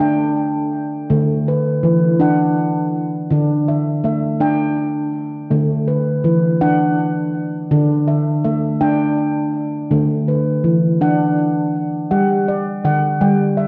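Gentle and dreamy, this meditative world piece features a solo handpan, played up front for the full 13.7 seconds. It sits at 54 BPM in a straight 6/8, in D major tuned to A4 = 445 Hz, with a dark, ringing nitrided-steel tone and sharp finger strokes ranging from D3 to G5. The harmony alternates between D5 and A5/D before shifting to G5 at 12.1 seconds. A diffuse ambient delay on the handpan, a wet echo chamber with small room ambience, and the warbly pitch drift of worn cassette tape give this fragment of a longer piece its hazy, smooth character.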